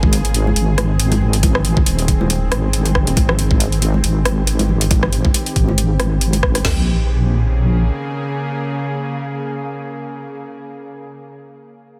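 A dense, heavily limited mix with light reverb carries this dark, meditative deep dubstep fragment at 138 BPM, in a swung half-time 4/4 feel and set in Bb dorian. Up front, a deep, chorused sawtooth-and-sine wobble bass and an overdriven electronic garage kit with a knocking kick, woody snare, toms and crash drive the groove. A second overdriven kit layer adds metallic hats and rim clicks, while ringing acoustic congas with dub echo sit in the background, and a tense, detuned string-like drone with vibrato holds sustained chords under a filter sweep, moving from Ab to Bbm7 at 6.6 seconds and carrying on alone after the bass stops at 7.9 seconds until 10.3 seconds.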